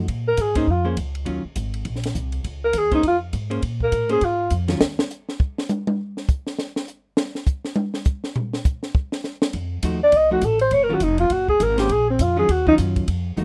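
Swinging and cool, this fast small-group jazz cut moves at 203 BPM in 4/4 with a swung eighth-note feel, sitting in Bb minor over chords like Bbm9 and Ebm9. A breathy alto saxophone carries the melody as a soloist, its dark, whispered tone shaped by light vibrato, soft attacks and scooped notes, sounding intimate yet distant and roomy while still placed up front. Beneath it, a clean, picked hollow-body electric guitar comps in a dark voice, and a woody, thumpy upright bass with gut strings anchors the low end. The compact cocktail drum kit plays throughout, dry and punchy, with a high-tuned snare, punchy kick and dark cymbals, moving across hi-hat, ride, snare and toms. From 4.8 to 9.5 seconds it takes a solo break while the others drop out. The bass returns on an F7b9 chord at 9.5 seconds, followed by the guitar and then the saxophone, and the whole thing has the loose, nearly reverb-free feel of a rough home demo.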